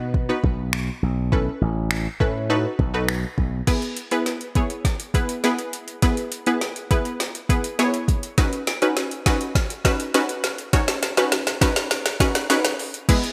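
A detuned, ring-modulated analog pluck with chorus, sidechain pumping and a filter sweep carries this upbeat, carefree dance-pop excerpt at 102 BPM, joined by a growly, punchy slap bass with an envelope filter that stops at 3.6 s and a smooth R&B drum kit with gated reverb, a soft kick, woody snare, metallic hats, finger snaps and crash cymbal that builds into a long fill from 3.7 s, as the key brightens from B mixolydian to B major within a moderate, lush hall reverb and bright 1980s-style digital production.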